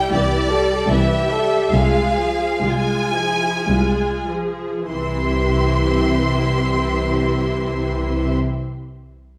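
Classical, a lyrical and serene slow romantic movement for string orchestra in 3/4 and C major, tuned to A4 = 436 Hz, drifts between 46 and 83 BPM with rubato and slows through its first 4.9 seconds as an up-front, clear violin section sings the melody with intense vibrato over a focused second violin line, rich violas, smooth, close cellos and a clear double bass section holding low C, the harmony moving from C to Fm/C and back to C at 4.9 seconds, all set in a stone room with a 1.4-second reverb tail, in this brief cut from a longer piece.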